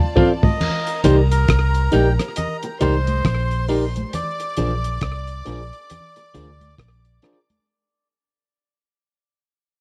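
A reedy, nasal melodica carries the tape-echoed melody in this smooth, bittersweet lovers rock reggae cut at 68 BPM in C minor, which opens on a drum fill from a muffled, cloth-damped kit under a soft sul tasto chamber violin section as a second line, and fades out from 0.6 seconds. They are joined by a clean tine electric piano, twangy, slightly broken-up guitar stabs in spring reverb, bright high-tuned congas with slapback echo and a round foam-muted bass entering at 1.1 seconds, all in a dry, close 1970s-style studio sound.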